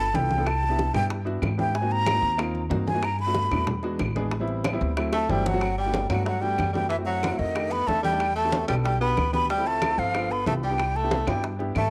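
A breathy silver concert flute takes the melody up front with tape echo and vibrato, opening this lively, danceable Afro-Cuban jazz excerpt over a dark grand piano, a growly pizzicato upright bass and background congas, tight high-tuned bongos and woody claves. Around 5.1 seconds a tenor saxophone with scooped notes and a smooth top joins as a second line, while percussion and piano fills carry the flute solo into a new section at 5.6 seconds. Light studio reverb surrounds the ensemble.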